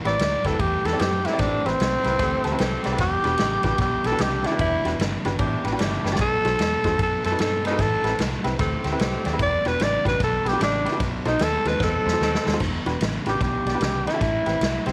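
Set in a moderate echo-chamber reverb with small-room ambience, this mournful, brooding electric blues shuffle excerpt swings, led by an up-front tenor saxophone whose raspy, growling subtone and vibrato carry a jazz-style solo through the first 12.6 seconds. Beneath it, a punchy, acoustic big-band drum kit drives the groove with crash, ride, snare and kick, adding fills around 6.0 seconds and just before the solo ends, while a dark, foam-muted fingered electric bass holds the low end. A jangly, metallic tack piano adds a honky-tonk fill, a crunchy overdriven guitar riffs in the background, and a tight saxophone section punctuates the minor-key changes with stabs.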